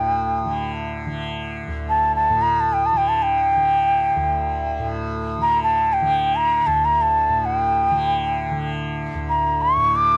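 Meditative and serene, this fragment of a Hindustani classical piece unfolds in free time, tuned to A4 = 443 Hz. A breathy, mellow bamboo bansuri carries the melody up front between G5 and D6, its crisp attack, vibrato and rolled-off highs drawing the ear. Beneath it, a softly plucked tanpura sits much lower in the mix, its buzzing, shimmering drone sustaining throughout, all captured in a dry, close 1970s-style studio sound with light reverb.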